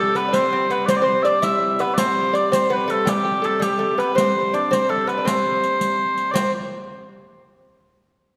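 A lilting 6/8 pulse at 110 beats per minute, counted in dotted quarters with a straight feel, drives this festive, ancient-sounding medieval dance in C major, cut from a longer piece. Up front, small bagpipes carry the melody with a mellow, sweet, continuous tone. Beneath them, a lute adds a bright, delicate fingerpicked second line on doubled gut strings, while an open-back banjo sits in the background with a twangy, plunky, percussive edge. A hurdy-gurdy holds a low, nasal, reedy drone with an airy bow sound, and a riq joins at 0.2 seconds with dark, compressed, saturated jingles. The whole ensemble sits in a wet scoring-stage reverb with a two-second tail, and the drone drops out at 6.4 seconds as a new section begins.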